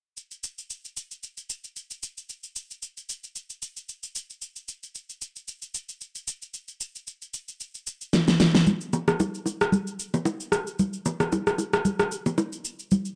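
Late-night and soulful, this amapiano excerpt moves at 113 BPM in 4/4 with a lightly swung sixteenth-note feel, opening on an up-front layer of electronic shaker, fat snare and rim click that carries the small-room character of a re-recording. After a drum fill at 8.1 seconds, congas and bongos join at 8.7 seconds, close and dry with hard hands, sitting forward alongside the drums. The production is dark and warm, set in a moderate digital room reverb with a digital ambience.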